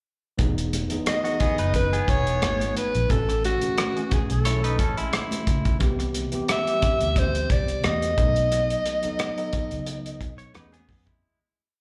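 A relaxed, lightly swung mid-tempo soul groove from a cloth-damped, thuddy drum kit with a tight kick and hi-hat and rim click sits up front beside a dark, round, foam-muted fingered bass line full of ghost notes, slides and chromatic approach notes, while high-tuned congas with a slap on two and open tones on four sit distant in the background. A worn, slightly out-of-tune tine electric piano, lightly overdriven, pushes drop-2 chords through Emaj7, Amaj7, Cmaj7 and B7 to a closing E6, as a clean, twangy direct-recorded guitar with spring reverb adds short fills in sixths until 5.8 seconds and returns briefly at the end. Over it all a breathy, whispered alto saxophone with vibrato sings intimate call phrases in a jazz style, the whole lush, smooth piece heard as a live club gig through the venue's PA before fading out from 8.5 seconds.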